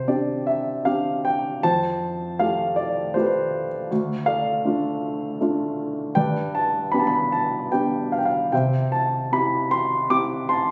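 Classical solo piano in a lyrical, peaceful and tender mood, this brief passage cut from a longer piece finds a warm, up-front grand piano with short sustain moving freely in triple time through Csus2, Fadd9, Dm and G before settling on C at 8.5 seconds, its D2 to D6 range bathed in a moderate scoring-stage reverb and captured on a phone in the room with added studio reverb and compression.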